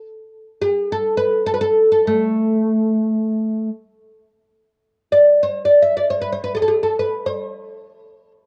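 Arabic maqam music in free time, this stately fragment of a longer piece presents a solo fretless oud in A maqam rast, moving between A3 and E5 for its 8.3 seconds. The plectrum-plucked double strings sound woody and deep, placed up front with a cassette tape coloring. A light reverb and small-room ambience give it the intimate, homespun character of a home cassette recording, as the opening phrase section returns at 4.8 seconds.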